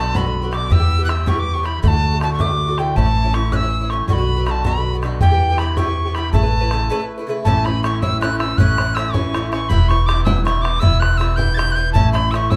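Celtic folk in a lively, bright jig feel, this recording is cut from a longer piece and has a band playing together live in one room, set in a wet studio reverb. A wooden whistle carries the melody up front, close-miked, airy and tongued, with a distinct chiff on its notes, vibrato, and a somewhat unsteady quality. Beneath it, an Irish bouzouki supplies picked accompaniment whose double strings ring with a metallic shimmer. A pizzicato upright bass on steel strings sits prominently in the mix, dark and growly, while a tight, damped bodhran joins at 0.1 seconds with the natural ambience of the live room. After a brief break from 6.9 to 7.5 seconds, the tune moves into its second section, which runs until the recording ends at 12.6 seconds.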